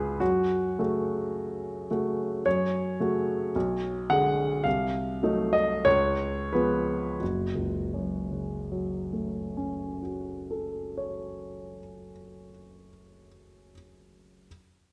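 In a rubato 2/4 that moves between 42 and 56 BPM and slows from 1.3 to 7.2 seconds, this fragment of a longer romantic character piece for solo grand piano in F# minor sounds stormy yet bittersweet. The harmony moves from F# minor through diminished chords to C#7 before settling back on F# minor at 7.2 seconds, with the piano spanning F#1 to F#5. The instrument sounds clear, intimate and up front, its audible action noise giving a natural closeness, set in a moderate recital-hall reverb.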